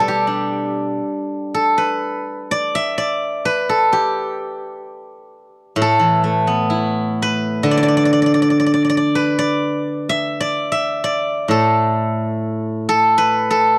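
A bright, silvery steel-string zither carries this short piece of Chinese traditional music entirely on its own, plucked with fingerpicks so each note rings out clearly. The mood is serene and flowing, with a loose, rubato feel around 60 to 67 BPM in 2/4. The zither spans from A2 up to E5, reaching down into a low register and up into a glinting upper register. A brief opening passage gives way at 2.0 seconds to a longer second section that runs to the close at 13.8 seconds, cut from a larger work. The sound is dry and close, like a 1970s studio recording with the instrument placed up front and very little room ambience around it.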